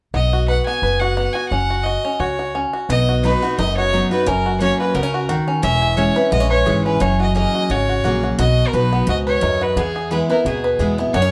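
A driving, lively bluegrass fragment opens with a clear, earthy fiddle, played by a single bowed player, carrying the melody with light vibrato and a touch of plate reverb, over twangy, percussive fingerpicked banjo arpeggios and a woody, thumpy pizzicato upright bass on gut strings, before a bright, full-bodied picked dreadnought guitar, finger squeaks and all, joins the accompaniment at 2.9 seconds in a moderate studio room.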